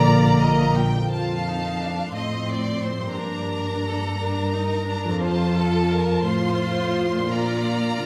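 A rubato 6/8 lilt carries this hopeful, tender cinematic film score, where a lush violin section sings the melody over an intense chamber violin line and focused violas, while a hollow silver flute and a dark, distant horn section stop within the first second, a barely audible clarinet appears only at the very start and end, ringing thumb-plucked harp arpeggios run throughout, cellos hold the bass, and a smooth double bass section drops out at 0.9 s, the ensemble set in a wet scoring-stage reverb.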